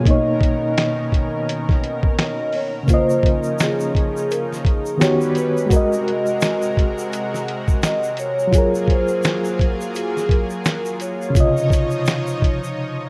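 Dreamy and cosy, this lo-fi hip hop excerpt sits at 85 BPM in Db major with a swung 16th feel, its chords moving from Cbmaj9 through Db69, Eb7alt and Ab9 to Gbmaj9 and Dbmaj9. A reedy electric piano with fast tremolo and a cassette tape tint carries the accompaniment over a thick, detuned sawtooth pad with chorus, while a mellow soft-mallet vibraphone with slow motor vibrato and tape echo sings the melody. Up front, a muffled, pitched-down sampler kit of thumpy kick, snare, hi-hat and finger snaps drives the rough home-demo mix, joined at 2.9 seconds by a faint, grainy egg shaker, before a short break at 12.8 seconds.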